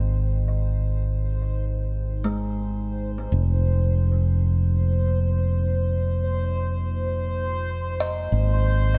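Floating in free time, this hazy, meditative ambient fragment in F minor, tuned to A4 = 438 Hz, is cut from a longer piece and drifts from Abmaj9 to Fm11 at 3.3 seconds before settling back on Abmaj9 at 8.3 seconds. Up front, a fingered electric bass holds the low end between F1 and Ab1 with a direct, amped, warm tone. A woody, hollow-bodied kalimba spins ringing, airy thumb-plucked arpeggios through a low-pass filter that sweeps across the whole nine seconds, its notes trailed by analog delay. In the background, a deep, moody pad of detuned sawtooth and sine layers with a sub octave sustains slow-blooming chords, thickened by chorus and its own reverb, while a bright, resonant sawtooth texture bubbles on a high C5 through random filter steps. The mix sounds dry in its room but heavy with echo, keeping the bass close while the other parts shimmer behind it.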